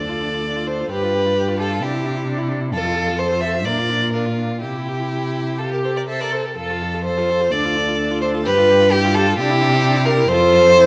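A quick classical-period movement for string quartet in F major, this spirited, graceful passage moves at roughly 121-133 BPM in 4/4, with a rubato feel that lets the phrasing breathe. The melody belongs to a violin heard at a distance, its focused, vibrato-laden tone sitting in the background, while a second violin carries a smooth, even line up front in a higher range. Beneath them, a distant viola supplies expressive accompaniment with vibrato and portamento, and a cello grounds the ensemble with a steady, up-front bass line. The harmony circles through Dm, G7, Cadd9 and F, passes through Bb and C, then returns to the same progression to close on F at 10.3 seconds. A recital hall gives the quartet a lush, wet reverb, and the whole passage is a short cut from a longer piece.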